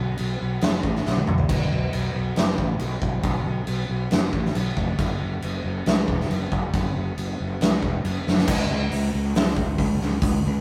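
A straight 4/4 hard rock drive at 137 BPM, aggressive and driving, carried by a huge arena drum kit with a punchy kick, medium-tuned snare, hi-hat, crash and toms ringing in a big natural room, with fills at 1.1 and 8.3 seconds. Up front beside it, a fuzz-soaked fingered electric bass growls bright and overdriven in its low register, shifting into a new section at 8.5 seconds. Light reverb and a rough rehearsal-room sound give this cut from a longer piece a raw, live edge.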